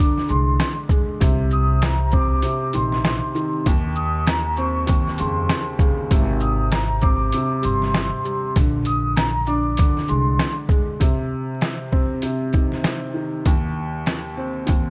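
Tough and dark, this boom-bap hip-hop excerpt in C minor moves at 98 BPM in 4/4 with a swung sixteenth-note feel. A slightly detuned, woody upright piano sits up front from the start alongside a soft-mallet vibraphone whose metallic, ringing tone carries a fast motor vibrato and an analog delay as it plays the melody high in its range. A compressed, pitched-down sampler-style drum kit enters at 0.2 seconds, muffled, with a thumpy kick, medium-tuned snare, hi-hat and shaker, while a pizzicato upright bass with gut strings adds a low, dark pulse. The harmony moves through Cm7, Abmaj7 and Bb7, and after the vibraphone and bass drop out near 10.5 seconds, the piano and drums carry a closing section on Cm and Cm/Eb until 14.9 seconds. The dry sound is coated in vinyl crackle.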